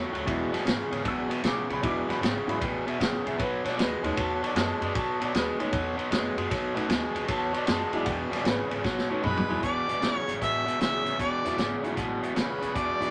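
A bright, overdriven electric guitar riff and a woody, growly upright bass in the background open this gritty, rollicking electric blues shuffle at 154 BPM in E mixolydian, joined by a vintage drum kit with dark cymbals and a tight kick, and, from 0.3 seconds, clear, smooth concert grand piano accompaniment, until a drum fill at 8.8 seconds ushers in a mellow harmonica solo at 9.3 seconds, up front with light vibrato and scooped notes, all set in a short studio reverb in this excerpt from a longer piece.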